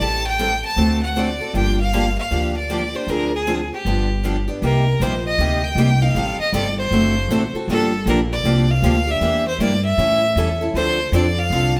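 A swung 4/4 at 157 BPM drives this fiery, bittersweet slice of acoustic string swing in G minor, where an intense, up-front bowed violin with vibrato and an airy bow carries the melody over two picked steel-string acoustic guitars (one bright with finger squeak, the other boxy and set in the background) and a woody, thumpy pizzicato upright bass on gut strings, the band playing live together in a wet stone room.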